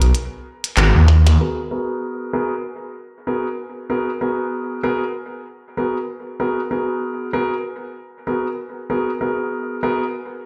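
A thick, swirling detuned saw bass with a saturated, up-front tone and a fast attack opens this playful, swaggering glitch hop cut from a longer piece, its phaser coloring every sustained note over a G#m9 chord. Alongside it, an electronic, glitchy drum kit of handclaps, clicky low-pass-filtered hats and a tiny filtered snare rides a swung 16th-note feel, with a band accent and a short drum fill before the bass and drums stop at 1.4 seconds. A concert grand piano with a deep low end plays stabs through a low-pass filter and dub echo from the start, then carries on alone while a filter sweep moves across it until the piano ends at 10.0 seconds. The mix sits in a moderate plate reverb and sounds as though played on a big sound system in a bare room, giving it a large, roomy studio space.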